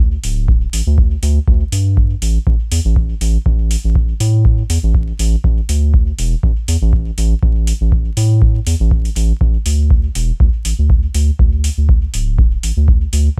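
Dub techno at 121 BPM with a lightly swung sixteenth feel and a hypnotic, hazy mood, built on a round, dark sine-like analog bass that pumps against a dry, deep, up-front electronic kick, with layered metallic hi-hats carrying a tape-warm sheen over a bed of vinyl-crackle ambience throughout this short cut from a longer track.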